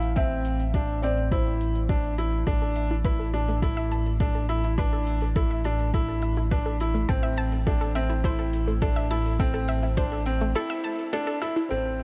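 A straight 104 BPM pulse in 4/4 drives this melancholic, moving piano-and-strings electronica in A minor, where a bright, woody upright piano riff with short sustain, low-pass filtering and tape echo sits up front over a round, detuned analog bass with sidechain pumping, a deep layered kick and smooth electronic hats, while a soft, felt-muted upright piano sings a distant echoed melody at the start and again at 11.7 seconds and a lush, punchy unison pluck with 12-bit sampler grit spins arpeggios from 2.5 seconds as the harmony moves between Am and Asus4 in a dark, lightly reverberant mix.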